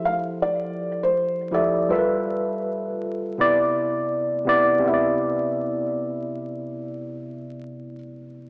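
A worn, slightly out-of-tune tine electric piano sits up front with cassette-tape grit, accompanying on Fmaj9, G13 and Cmaj9 beneath a felt-muted upright piano whose soft, dark, boxy melody carries tape echo, in a dreamy, mellow, swung hip hop fragment cut from a longer piece and soaked in plate reverb, vinyl crackle and a small-speaker sound.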